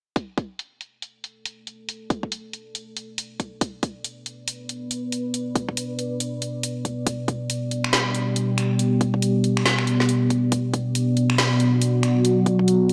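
Deep dubstep excerpt with a dark, cavernous half-time swing, where a detuned, warbling sawtooth pad with a sub octave and chorus enters at 1.9 seconds under a filter sweep, holding sustained chords from Bm7 to G over a deep electronic kick and a deep house kit of finger snaps, woody snare and dark, low-passed hats, all soaked in dreamy plate reverb.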